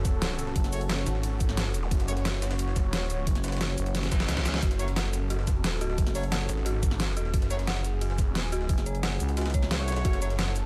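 A snarling, distorted saw bass sits up front in this tense, futuristic dark technical drum and bass excerpt at 177 BPM in F# minor, joined by a growling FM bass in bursts, a knocking overdriven electronic kick, a layered dubstep kit with a deep snare and bright hats, a very quiet, gritty jungle sampler-style kit, a moody detuned analog pad with sidechain pumping, background stabs from a classical-style brass ensemble with delay, a zap and a reverse cymbal that runs from 4.1 s over a drum fill, and an eerie, inharmonic synth bell arpeggio that enters at 4.6 s.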